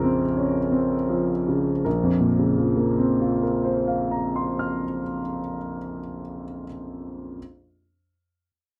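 In a rubato 3/4 at 54 BPM that slows down over the first 1.8 seconds, this melancholic, intimate neoclassical minimalist excerpt in Bb minor, tuned to A4 = 441 Hz and opening on a Bbmadd9 chord, is carried by a solo dark grand piano spanning Bb1 to F6, its mellow, boxy tone heard up front with long sustain and audible action noise in a dry, close 1970s-style studio recording touched with light reverb.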